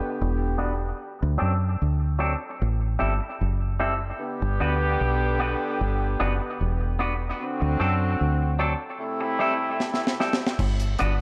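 A round, foam-muted fingered electric bass anchors this hazy, laid-back dub reggae excerpt over Gmaj7, D7 and Am7, alongside a dark, vintage horn section with vibrato and tape echo and a clean, compressed electric guitar accompaniment whose low-passed, echoed tone moves through a filter sweep, until a dry reggae drum kit with a tight kick and high-tuned snare enters with a fill at 9.8 s in a lightly reverberant, echo-heavy mix.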